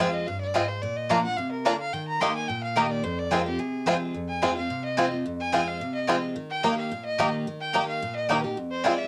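A home cassette recording with a moderate studio reverb gives this short, rustic bluegrass cut from a longer piece a homespun, driving feel over a lightly swung beat. A twangy, up-front banjo carries the melody while the fiddle, smooth with a light vibrato, plays a second line and solos across the whole passage. A full-bodied picked acoustic guitar accompanies and a woody, double-strung mandolin adds stabs as the chords move around F minor, B-flat and E-flat through a repeated section.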